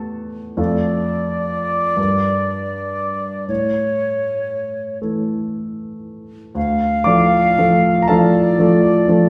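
In a rubato 6/8 at 40 BPM in dotted quarters, this tender romantic classical duo in D minor, cut from a longer piece, opens with a clear grand piano accompaniment whose intimate, short-sustained tone carries audible action noise, joined at 0.6 s by an airy silver concert flute melody with straight tone and crisp attack, all set in a wet stone room with a 1.4-second reverb heard from further back, as the harmony moves from A7(no3)/E through Dm/F, Gm and A before settling on Dm at 6.6 s.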